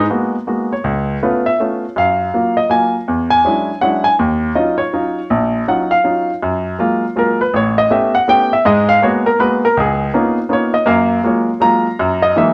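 A worn cassette tape sound colours this short jazz piece, its pitch drifting and warbling under a moderate large-studio reverb. A clear baby grand piano plays alone for the full 12.5 seconds, sitting up front with an intimate, natural tone, short sustain and audible action noise. The mood is late-night and moody, swinging in a brisk 3/4 at 162 BPM, and the piano ranges from A1 up to Bb5. Rich extended harmony moves through chords such as Abm9, Dbaug7, Gbmaj7 and E13 in the opening stretch. A second passage begins at 6.4 seconds, cycling through Gbmaj9, A9 and Db13 before settling toward Gb13.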